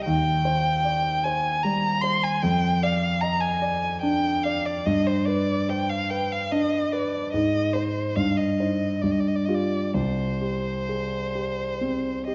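A single bowed violin carries the melody from 0.0 to 12.3 s, singing between C5 and C6 with soft attacks, expressive vibrato, gliding portamento and a smooth top. Beneath it, a natural-sounding grand piano provides accompaniment across a broad span from C2 to Eb5, and both instruments sit up front. This elegiac, solemn romantic duo unfolds in a flexible, rubato three-beat metre. The harmony moves through Cm/Eb, Fm13, G and Ab before settling onto Cm/G and bare G5 and C5 sonorities. A moderate scoring-stage reverb surrounds the pair, and the dark, mellow production keeps the top end below 7.5 kHz. The passage is cut from a longer piece.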